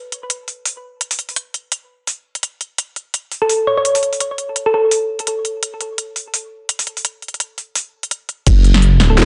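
Dark and spacious, this half-time drum and bass excerpt moves at 169 BPM in F# minor with a lightly swung sixteenth feel, built on a layered, tape-warm kit of cracking snare, crisp hats and crash cymbal that runs from the start. A round, tine-like synth pluck with chorus and delay surfaces briefly around 3.4 seconds, sitting up front in a dreamy mix soaked in plate reverb. At 8.5 seconds a knocking electronic kick lands and a deep, rumbling detuned saw bass enters with a beating unison tone.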